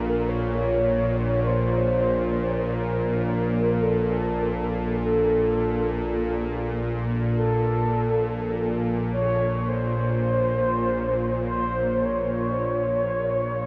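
From the first moment of this dark, unsettling ambient drone fragment, a string-like, tense bowed drone with ring modulation, a noise layer and vibrato sits up front in the low register beneath a round, horn-like synth lead whose mellow sustained tones pass through a filter sweep with subtle chorus and tape echo, the whole piece set in a huge, dark reverberant space.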